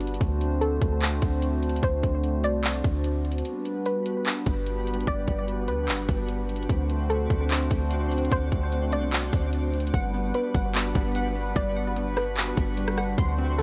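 A light reverb gives this blissful, floating cloud-rap excerpt an airy sheen. It rides a half-time 148 BPM groove in G major, where a trap kit with a hard-clipped kick and metallic hats sits up front beside a deep, boomy 808-style bass, and a hollow, flute-like pad pumps beneath a soft, round plucked melody as the chords move between D7 and Gmaj7. A twinkling granular shimmer drifts in the background from 4.0 seconds, the kick drops out briefly around 3.5 seconds, and a glassy, crystalline wavetable pluck adds arpeggios from 9.9 seconds.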